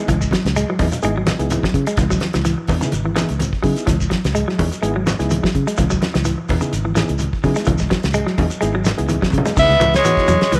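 Up front, a clean, hollow-bodied semi-hollow electric guitar spins dark arpeggios through spring reverb and tape echo over a round, foam-muted fingered electric bass, a dry, damped 70s drum kit with a fat snare, background congas and a grainy shekere, while a reedy electric piano shimmers with fast tremolo on a hypnotic, funky afrobeat groove around C#m7, until a drum fill at 9.2 seconds brings in a clear alto saxophone melody with tape echo and a raspy, gritty tenor saxophone second line at 9.6 seconds in this short excerpt.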